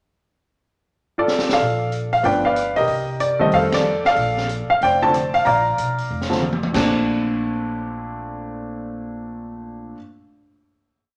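An intimate, up-front concert grand piano with audible action noise and deep bass opens this sophisticated, swinging jazz piano trio piece in Bb major at 187 BPM, playing a motif-based melody in sentence phrases over syncopated rootless comping; a distant, roomy drum kit with dark cymbals, a high-tuned snare and a boomy kick enters with a fill at 1.3 s and keeps stick time on the hi-hat, a woody pizzicato upright bass joins in a two-feel at 1.6 s, and after the kit stops at 6.8 s, piano and bass hold a final chord in a moderate large studio reverb.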